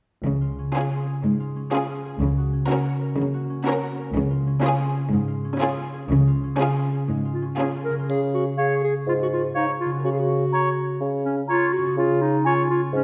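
A playful, whimsical cinematic film cue in Db major at 123 BPM, cut from a longer piece, with a mischievous, magical air. Bowed strings open the first 8 seconds, with double basses and cellos holding the low end, a rich, close violin section carrying the melody, and a more distant violin section with portamento and lush violas filling in beneath, while an up-front, ringing concert harp plays arpeggios throughout. Around 8 seconds the colour shifts to woodwinds: a warm, up-front clarinet slips in at 7.3 s with a second line, joined at 8.1 s by a mellow bassoon and shortly after by an airy, hollow flute and a roomy oboe, with a brief dry triangle touch, all held in a generous scoring-stage reverb.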